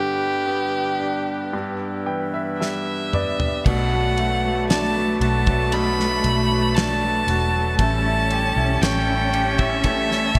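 A melancholic, longing pop ballad in a slow 4/4, opening on a smooth, bowed solo violin with vibrato carrying the melody up front over a brilliant baby grand piano, whose action noise is audible as it plays a fill from 1.5 s, and a distant woodwind section holding soft sustained chords in the background. A damped 70s drum kit with a fat snare, dark cymbals and gated reverb enters at 2.6 s with a fill. At 3.7 s a focused symphonic cello section adds a second line, a fingerpicked flamenco guitar plays arpeggios in the background with subtle chorus and delay, and a round, foam-muted electric bass sits up front, all inside a lush hall and bright 1980s-style digital production.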